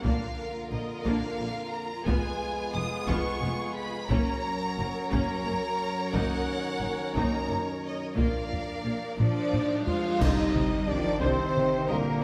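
Soaked in a lush scoring-stage reverb, this dark, dramatic cut from an epic orchestral film score moves in a slow 6/8 at 59 BPM, with vibrato-laden violins carrying the melody over a soft-attack second violin line, smooth violas, clear trombones, distant, roomy French horns, and cellos and double basses sitting in the background. Hard-stick taiko drive the music from the start, a cymbal swell, bright clash cymbals and concert bass drum join at 6.1 s, and airy flutes slip in at 9.2 s during a drum fill. A very quiet tuba arrives with a band accent at 10.2 s as the harmony shifts to a Cmadd9 chord.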